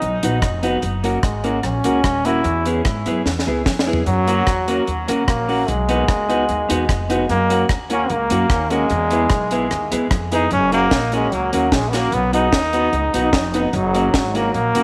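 Ska at 149 BPM in F# mixolydian, upbeat and joyful, this cut from a longer piece has a brilliant, present trombone with light vibrato and tape echo carrying the melody up front, over a dry, up-front reggae drum kit with a high-tuned snare and tight kick that plays a fill from 3.3 to 4.1 seconds. A woody, growly pizzicato upright bass anchors the low end, while a dark, clean electric guitar bathed in spring reverb and a boxy upright piano with short stabs in the background join at 0.2 seconds. The chords move between B, F# and E, and a moderate echo chamber reverb gives the whole a small-room ambience.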